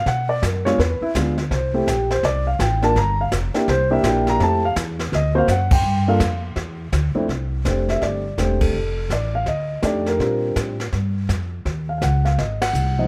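Relaxed and playful, this short jazz piano trio excerpt swings at 166 BPM in F major, with a mellow, woody upright piano carrying the melody up front with long sustain over a thumpy, gut-strung pizzicato upright bass that also sits close. Behind them, a brushed drum kit with dark cymbals, a medium-tuned snare and a boomy kick plays in a dry studio room, and the whole band hits accents at 5.7, 8.6 and 12.6 seconds as the chords move through Gm7, C9 and Fmaj7 toward F69, Bb69 and a closing Ab7.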